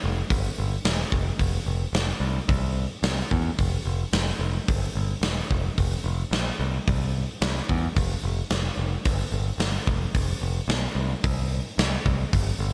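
A bright, picked electric bass opens this swaggering, brooding classic rock passage, sitting low and up front with a direct, punchy attack. At 0.3 seconds a big acoustic rock kit joins in a straight 4/4, its hi-hat, medium-tuned snare and punchy kick carrying a warm, mid-forward, rolled-off character and the air of a large room. The dry, close sound keeps both parts up front and immediate until the cut at 12.7 seconds.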